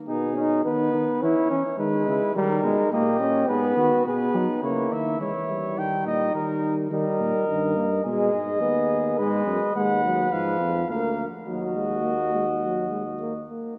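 A straight 4/4 pulse at 105 BPM drives this solemn classical brass canzona, cut from a longer piece, in which a dark, up-front trumpet carries the melody over a distant, punchy flugelhorn second line, a mellow trombone accompaniment with light vibrato, and a clear, vintage-toned tuba bass, all four entering together at 0.1 s and sounding until nearly the close in a long, wet church reverb as the music turns from G# minor to Eb minor at 9.2 s.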